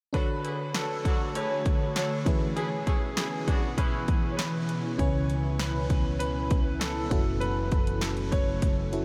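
Nostalgic and moody, this short 1980s-style pop passage drifts through a dreamy mix soaked in a huge ambient reverb. A clear, natural grand piano carries the melody with analog chorus and a diffuse ambient delay, while a glassy, bell-like FM electric piano with chorus fills out the accompaniment. An ethereal, airy pad of detuned sawtooth and triangle tones enters at 0.9 seconds with slow-attack sustained chords, and a distant, roomy horn section adds pop-style stabs with light vibrato until 4.0 seconds. Up front, an electronic house drum kit plays hi-hat, snare and kick, with the kick and snare sounding punchy. At 5.0 seconds a dark, round fretless electric bass joins under the harmony as it moves from Dmaj7 and E6 to C#m7 and F#m7.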